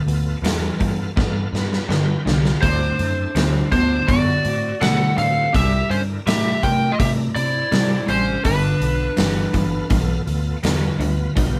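Blues rock power trio meets southern rock in this gritty, raunchy 82 BPM excerpt in G mixolydian. A raw, double-tracked garage guitar riff, a dark, round foam-muted bass and a big, up-front rock kit with a tight kick drive a straight 4/4 groove over G7, D7 and C7, while a shouting tonewheel organ with fast rotary speaker and chorus vibrato holds chords in the background and joins the drums for a fill at 1.2 s. From 2.6 s to 9.9 s, a warm overdriven slide guitar played with fingerpicks carries the melody up front as a biting lead guitar adds a quieter second line, the band captured live in one room with moderate reverb.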